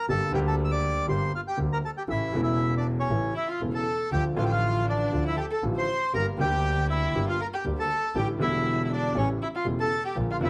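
A reedy, up-front bandoneon carries the melody from the first instant of this sultry, passionate tango excerpt at 119 BPM with a rubato feel, joined almost at once by a clear, vintage-toned concert grand piano accompaniment with deep bass and a dark, woody bowed double bass with vibrato, while a bowed violin with expressive vibrato and portamento adds a second line from 3.3 s over a Gm, A, Dm, Gm, A7sus4, A7 progression in light reverb.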